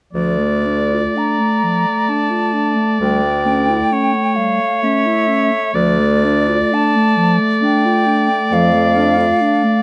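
A solemn, melancholic slow romantic movement for wind quintet in 3/4, moving with uneven, rubato beats through a brief passage cut from a longer piece. A hollow, pure silver concert flute carries the melody with vibrato and tongued notes, close and intimate. Beneath it, a bright oboe sings the second line, a mellow clarinet and a French horn with light vibrato fill in the accompaniment, and an up-front, clear bassoon holds the bass until 9.3 seconds, all in a light reverb.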